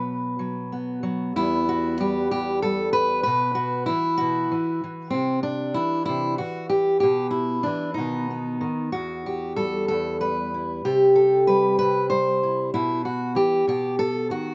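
In a straight 6/8 at 63 dotted-quarter beats per minute, this reflective, intimate folk excerpt cut from a longer piece features a solo fingerpicked steel-string acoustic guitar, bright and up front with fresh strings, ranging from E2 to C5 in E minor as it moves from a B5 opening into a second section at 1.4 seconds through Em, Bsus4, Cadd9, E5/B, B, Emadd9 and C before returning to E5/B and B, all set in a light reverb with an outdoor, roomless sound whose top end is softly rolled off.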